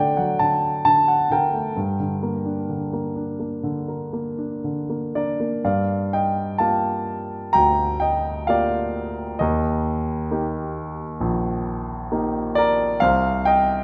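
A moderate concert hall reverb surrounds a solo concert grand piano that sits up front, its tone dark and mellow with deep bass and a natural, short sustain. This is lyrical classical piano in a reflective, wistful mood, moving at a slow 58 to 68 BPM in 4/4 with a rubato feel. The piano covers a broad span from Bb1 to Bb5, carrying the whole texture alone. The harmony begins in G harmonic minor, opening on D and turning to Gm at 1.8 s, then settles into G minor at 5.6 s, where Gm7 gives way to Eb and finally Cm. The passage is cut from a longer piece and runs to 13.8 s.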